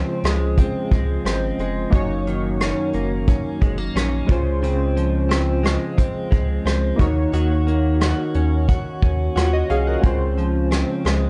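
Laid-back and nostalgic, this indie pop and bedroom pop fragment drifts in a straight 4/4 over mellow seventh and sixth chords. A soft brush drum kit, entering at 0.2 s, sits up front with a tight kick, hi-hat and rim click, though its acoustic studio-room sound comes across as distant and roomy. Beneath it, a round analog bass carries deep, sine-like low notes with a filter sweep and a sustained tone. A clean electric guitar, recorded direct and compressed, plays picked accompaniment through a lush chorus and vibrato effect. Chorused retro synth keys add a glossy pulse-wave and sawtooth shimmer with pulse-width modulation and tremolo, their notes fast in attack and decaying. Moderate studio reverb and a dark production, topped out at 10.8 kHz, give the whole a soft, hazy finish.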